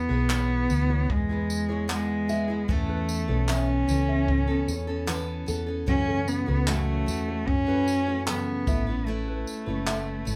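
A rich, bowed cello with smooth vibrato carries a heartfelt, carefree melody up front over a picked steel-string acoustic guitar and a round, dark hollow-body electric bass, with a thumb-plucked nylon-string guitar adding arpeggios in the background, brushed drums with a boomy kick and handclaps joining at 0.3 s alongside a jingly tambourine, all in a 75 BPM acoustic pop excerpt in A major that moves from E through Aadd9 and F#m7, played live together in a small room.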